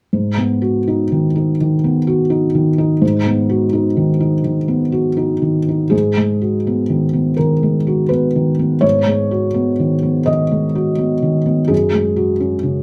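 A modest studio room lends a short, natural ambience to this reflective, melancholic excerpt of neoclassical minimalist piano in G# minor, where a solo felt-muted upright, close and intimate with a dark, mellow tone and audible action noise, plays rubato at 83 BPM in 4/4 across F#2 to D#5, resting on G#m7, moving into a new section at 5.9 seconds and settling on F#sus2 at 11.7 seconds.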